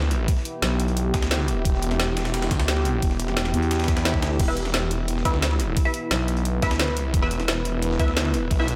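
Mechanical and futuristic, this dark technical drum and bass runs at 175 BPM in E minor, a short cut from a longer piece. A snarling distorted saw bass drives the low end from the start, aggressive, detuned and saturated with a moving notch, sitting up front beneath a deep, moody ambient pad whose slow-attack chords carry chorus, built-in reverb and sidechain pumping. The drums stack an overdriven electronic kick with a knocking punch, a layered kit with a woody snare, bright hats and crash, and a very quiet, gritty sampler-style break with a high-tuned snare. A thick, growling FM bass cuts in briefly near 0.6 seconds and returns from 3.5 to 6.6 seconds, while a faint electronic swell sounds in the background just before muted, full-bodied dub chord stabs enter at 4.5 seconds, plucked and mellow through phaser and tape echo. A lush hall reverb soaks the mix in a dreamy haze around the aggressive low end.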